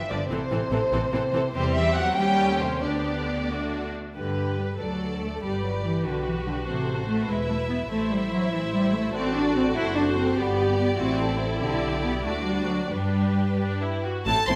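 A clear, close violin section carries the melody with intense vibrato in this graceful, lively classical-period movement for string orchestra in G major, moving in a rubato 6/8 at roughly 87-99 BPM in dotted quarters. Beneath it, a focused second violin line and a rich, lush viola section fill in the harmony, while cellos and a smooth, distant double bass section share the bass, every part bowed with vibrato. Moderate scoring-stage reverb surrounds the strings, and after an opening phrase the music turns to a new section at 4.2 s in this passage cut from a longer piece.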